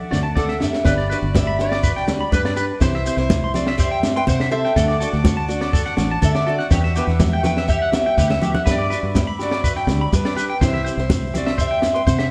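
A boxy, picked acoustic archtop guitar carries the melody over reedy, slowly beating accordion chords at the start of this danceable highlife guitar band excerpt in G major at 123 BPM; at 0.1 s a clean, compressed electric guitar enters in the background, along with a bright, twangy, slightly broken-up electric guitar playing arpeggios through spring reverb, a round, foam-muted fingered electric bass, a grainy shekere and a small cocktail drum kit with a high-tuned snare and punchy kick, which plays fills at 0.4 s and 8.2 s, while thick-skinned, high-tuned congas join at 0.4 s, and the whole band plays live together in a moderate stone room.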